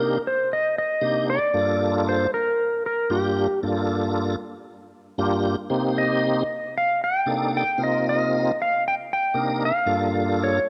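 Moderate plate reverb lends this short slice of a longer blues a smoky, soulful glow, in G minor at 115 BPM with a light sixteenth-note swing. Up front, a bright, twangy clean lap steel carries the melody with slide and volume swells, while a full tonewheel organ accompanies through a slow rotary speaker with light overdrive and chorus vibrato. Both play from the start to about 10.7 seconds, moving between Cm7 and Gm7.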